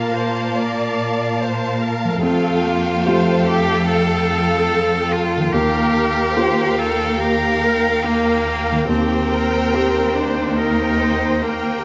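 Cinematic, emotional film score for orchestra, bittersweet and full of longing, moving at 72 BPM in 4/4 with a rubato feel, cut from a longer piece. A clear, smooth solo cello carries the melody with light vibrato, shadowed by a violin section that sits softly in the background at the top of the range and a lush second violin line beneath it. A dark viola section and a muted, mellow upright piano with a thin felt tone fill out the accompaniment, while a cello section up front anchors the bass with expressive portamento. From 2.0 seconds a concert harp joins in the background with ringing, thumb-plucked arpeggios. The harmony drifts from Bbmaj7 through Fadd9 and Ebadd9 to Cm7/Eb, heard through close, detailed microphones in a light reverb that keeps the intimate textures in focus.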